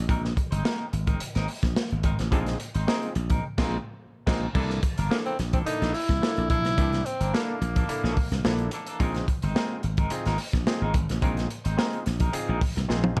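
Strutting and gritty, this funk excerpt moves at 108 BPM in a straight 4/4, cut from a longer piece. It opens on a break, with the growly, punchy slap bass up front alongside a crunchy breakbeat drum kit whose saturated sound, dark cymbals, tight kick and rolled-off top sit forward in a studio room, while a bright, twangy clean electric guitar adds picked accompaniment through tremolo. At 2.3 seconds an auto-wah clav joins with stringy, overdriven stabs through a combo amp, and the band hits an accent before the harmony moves from Bb9sus4 to C13. A bright tenor saxophone takes a short solo melody from 5.1 to 8.5 seconds, up front with light vibrato and a smooth top, before the chords return to Bb9sus4. A drum fill closes the passage, and the whole production has a dark, warm tone with light reverb.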